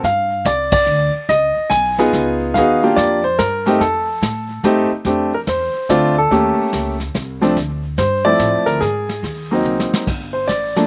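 Swinging in 3/4 at 144 BPM, this short jazz piano trio passage from a longer piece has a playful, lilting feel. A clear, smooth grand piano with a vintage character sits up front and carries the melody from F3 to Ab5 across the full 10.9 seconds, moving through colourful chords such as Db9 and Ebmaj9 before settling into F major at 5.1 seconds, then on through Eb7#11. Beneath it, a woody, thumpy upright bass with gut strings plays pizzicato low in the mix, while a vintage brush kit with dark cymbals, a medium-tuned snare and a punchy kick keeps time with brushes under a rolled-off top. The whole band lands an accent at 0.7 seconds, and the drums break into a short fill from 9.7 to 10.1 seconds as the harmony reaches a Gsus2. The sound is dry and close, with little reverb.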